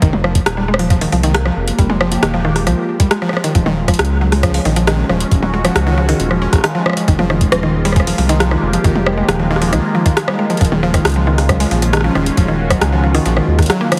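Opening at once with a woody, mallet-like synth pluck spinning arpeggios through chorus and digital delay, this short IDM cut from a longer piece sits in F minor at 136 BPM with a straight 4/4 feel and a melancholic, eerie mood. Beneath it, a round analog bass with tube saturation carries a deep, evolving low end, while a gritty, thumpy electronic kick pushes forward as the loudest part. An electro analog drum machine adds metallic hats, rim clicks and toms, its hats and toms softened by low-pass filtering, and the kit is kept up front. From 0.3 seconds a detuned, swirling pad joins with slow-blooming sustained chords, its phaser and chorus giving the harmony a drifting haze. The chords alternate between Fm11 and Ebm11 every few seconds, all set in a lush hall reverb and squeezed into a heavily compressed, radio-like sound.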